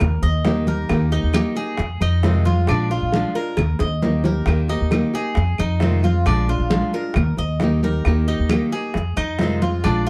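The sound is dark and warm, with light reverb. This sunny, danceable Cuban son in the guajira style is a short cut from a longer piece. A thumpy upright bass sits up front, plucked on gut strings, beside a bright, small-sounding nylon-string guitar fingerpicking the accompaniment. The Cuban tres picks arpeggios on its doubled, partly octave-strung courses, giving a metallic shimmer. Tight, high-tuned bongos and damped congas played with hard hands, both band-limited, join saturated, woody claves to fill out the percussion, with congas and claves kept in the background. A drum fill arrives at 3.6 seconds as the chords cycle through Eb, Fm7 and Bb7.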